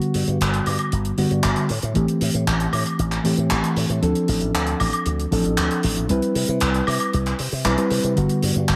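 Groovy and feel-good, this nu-disco excerpt, cut from a longer piece, rides a straight 4/4 pulse at 116 BPM in G major, building up throughout its 8.8 seconds. A mellow, reedy electric piano carries the accompaniment through built-in speakers, its clean tone touched by a digital delay as it moves through Gmaj7, Am7, Dm7 and Cmaj7 before returning to Gmaj7. A tight funk drum kit sits up front, dry, airy and polished, with handclaps, hi-hat and woodblock, and high-pass filtering thins the hats, snare, percussion and room. Entering at 0.1 seconds, a slap bass with an envelope filter adds a bright, growly, punchy line that stays direct. Light studio reverb gives the mix a gentle sense of space.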